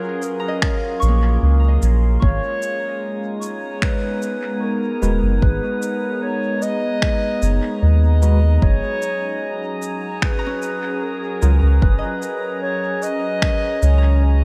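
Ambient dub at 75 BPM in a straight 4/4, hazy and meditative, cut from a longer piece and moving from F#maj7 to G#m and settling on F# near the close. A dark, distant clarinet carries the melody throughout, its roomy tone trailed by tape echo, while a warbling, detuned pad holds nostalgic, lo-fi chords beneath it with chorus and its own reverb. A ringing, fingerpicked Celtic harp plays arpeggios at the opening, drops out at 4.3 seconds and returns at 10.4 seconds, and a calm glass-harmonics texture drifts in the background with sine-like overtones. The low end is anchored by a round, soft sub bass sitting up front and an overdriven, layered electronic kick, with electronic shaker and finger snaps sent through dub echo. In the middle, a worn, slightly out-of-tune tine electric piano adds tremolo stabs through a combo amp, tucked in the background, all inside a light digital ambience.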